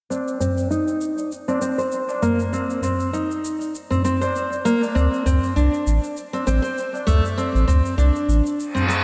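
This organic downtempo excerpt moves at 99 BPM in 4/4 with a light 16th-note swing, settling into a hypnotic, mystical mood in C dorian. A full-bodied, fingerpicked nylon-string guitar carries arpeggios up front throughout, shaped by a low-pass filter sweep and coloured by tape echo and slapback echo. Beneath it, a high-tuned, ringing tabla sounds distant, as if in a large room, while an electronic, produced shaker sits further back in studio reverb. At 5.0 seconds the harmony shifts from Cm to D5 as a deep, round sine sub bass enters up front with a fast attack and sustained tone. An electronic reverse cymbal arrives at 8.7 seconds, and a lush hall reverb gives the whole mix a big arena sound.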